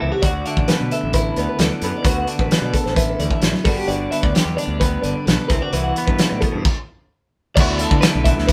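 A loose indie drum kit sits up front, entering at 0.2 seconds with a fat snare, tight kick, dark cymbals on crash and hi-hat, and a mid-forward small-room sound. This bright, intricate math rock and Midwest emo fragment, cut from a longer piece, moves in a straight 4/4 as two clean, picked, compressed twelve-string electric guitars share the harmony. One guitar carries the accompaniment with a bright, twangy tone, while the other plays warm arpeggios high in its range, shimmering with tremolo. Underneath, a fingered electric bass growls through overdrive and fuzz. The chords move from D69 to Gmaj9 and Cmaj9#11, and the band halts for a stop from 6.6 to 7.6 seconds before landing back on D69, all heard with light reverb as a group playing live in one room.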